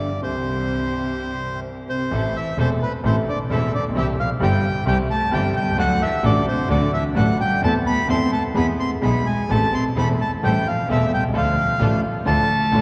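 A rubato 4/4 pulse at 130 BPM drives this melancholic, passionate tango excerpt in A minor: an up-front, reedy, vintage-sounding bandoneon carries the melody over a bowed cello second line full of vibrato and portamento, an intimate grand piano accompaniment with audible action noise and deep bass, veiled con sordino string stabs in the background and a bowed, gut-string double bass, set in a cavernous church reverb, with a break at 1.2 s before the harmony lands on Am at 2.1 s and moves through C, D, E and Dm.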